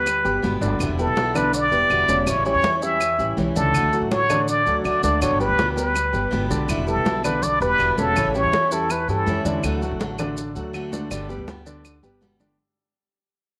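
Warm and relaxed, this excerpt from a longer Cuban son and guajira piece in D major moves at 163 BPM, led by an up-front, jazz-style trumpet with a plunger mute whose bright, punchy wah-wah tone carries light vibrato and a smooth top until 9.4 seconds. Beneath it, a full-bodied picked steel-string dreadnought guitar, an intimate baby grand piano playing arpeggios with audible action noise and long sustain, and a dark, thumpy pizzicato upright bass on gut strings circle through G, Em7, A7 and D. Grainy, mellow maracas join ringing high-tuned congas and woody claves, the latter two sitting in the background, all under a moderate spring reverb, and the music fades out from 9.6 seconds to the end at 12.6 seconds.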